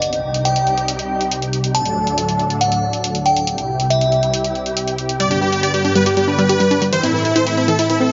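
Huge, detuned supersaw chords carry the melody with tape echo from 5.2 s, joined by a punchy filter-plucked unison arpeggio with delay, over a silky, nasal analog string pad with ensemble chorus and a tape-warm electronic hi-hat, while a crystalline FM synth bell with chorus, 12-bit sampler grit and delay plays a second line until 4.7 s in this soaring, uplifting trance excerpt at 139 BPM, tuned to A4 = 435 Hz and moving through Cm, D, C, G and Am inside a long ambient reverb, with the sound rolled off above 7.5 kHz.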